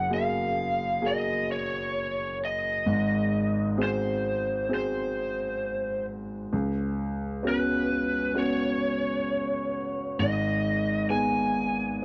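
Pop at a slow 65 BPM in a straight 4/4, emotional and hopeful, with a baby grand piano carrying the accompaniment from the low bass register up through an open, long-sustaining tone, while a picked lead guitar through a small cranked amp sings the melody with a lo-fi overdriven edge. Both parts sit up front for the full 12 seconds, moving through F#add9, G#7 and C#7sus4 before settling on G#m at 10.2 s. The sound is dry and close, like a 1970s studio take in a small room, and this fragment is cut from a longer piece.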